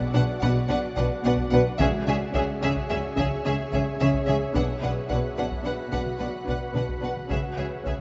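Ominous and mysterious, this cinematic suspense cue in 5/4, cut from a longer piece, sets a dark cello section riff and hard-stick taiko drums beneath an ethereal, detuned synth pad with ensemble chorus and built-in reverb. Clear violins carry a floating sul tasto melody over a rich second violin line, while violas, a very quiet cello section and double basses bow with soft attacks, and a felt-muted upright piano adds boxy texture with audible action noise. Soft-mallet timpani enter briefly at 1.8 seconds and return for a fill at 7.3 seconds, inside the wet ambience of a recital hall.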